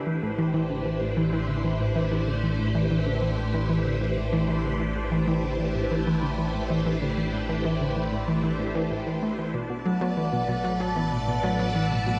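A swirling, bright string machine opens this excerpt of cosmic, expansive space music, holding sustained chords up front through ensemble chorus and phaser, while a round, detuned analog pluck plays a riff in the low register with chorus and tape echo. A bubbling stepped-filter texture sits in the background from the start, its resonant random filter steps softened by chorus and its own reverb. An evolving, nasal analog drone joins at 0.4 seconds, anchoring the bass on a low A. The sequencer-driven track moves at 95 BPM in a straight 4/4 in A dorian, resting on Am7 before shifting to Bm7/A at 9.5 seconds. Near the end, a mellow, gentle pluck adds background arpeggios with tape echo, and at 9.9 seconds a shimmering, retro pulse-width lead enters with a dark, full-bodied melody carried by vibrato, chorus and tape echo. A moderate plate reverb and an echo-heavy mix give the piece a spacious sense of drift.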